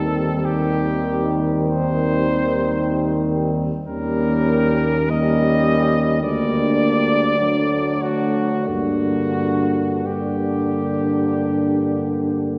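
Heard from further back in a reverberant concert hall, this solemn, melancholic hymn-like passage for brass band unfolds with a rubato feel in 4/4, cut from a longer piece. A clear cornet carries the melody up front with light vibrato and a soft attack, while a tight, mellow French horn section sings a second line in the background, and a bright, roomy trombone and a distant euphonium fill out the accompaniment. A warm tuba with a smooth top anchors the bass up front as the harmony moves from Cm/Eb through Eb7, Gm/D and D before settling on Gm at 8.7 seconds.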